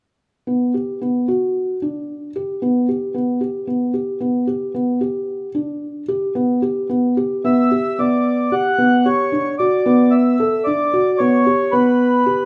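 Restless yet hopeful, this contemporary instrumental moves at 112 BPM in 7/4 metre and sits in G lydian, drifting through chords such as Gmaj7 and Bmadd11. A felt-muted upright piano plays soft, dark, intimate arpeggios with short sustain from 0.5 seconds. At 7.5 seconds a reedy, full accordion enters up front with the melody, its tone boxy yet mellow, all set within a moderate recital hall reverb as this fragment of a longer piece ends at 12.5 seconds.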